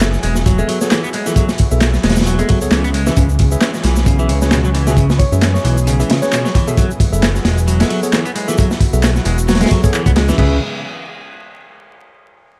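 This energetic, gritty breakbeat excerpt opens on a drop, with a crunchy drum kit up front: a tight kick, medium-tuned snare, hi-hat and dark crash cymbals, all saturated with a rolled-off top and analog delay. Beneath it, a punchy, tape-toned analog drum machine adds handclaps, ride cymbal and shaker, while a fat, detuned sawtooth bass carries the low end with a filter sweep. A lush, warbling unison pad holds sustained chords in the background with chorus and sidechain pumping, and a clean tine electric piano plays stabs through delay. From 0.2 seconds, a bright, picked electric guitar riff joins, lightly tube-saturated with subtle chorus and delay. Between 5.2 and 6.8 seconds, a round, gentle FM synth lead strikes a single C#5 through a small-speaker tone, as the music moves in C# minor at 133 BPM with 16th-note swing over F#m11 and C#m7 chords, all inside an echo-heavy small room with vinyl crackle.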